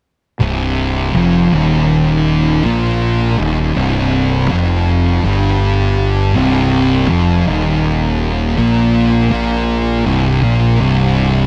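A straight 4/4 pulse at 81 BPM drives this hypnotic, sludgy metal fragment in C minor, cut from a longer piece and tuned to A4 = 438 Hz, where from 0.4 to 11.5 seconds a dark, distorted fuzz guitar riff sits up front over a second, warmer fuzz guitar riffing in the background, and a bright, growly overdriven fingered electric bass also stands forward, all captured in a dry, close 1970s-style studio sound.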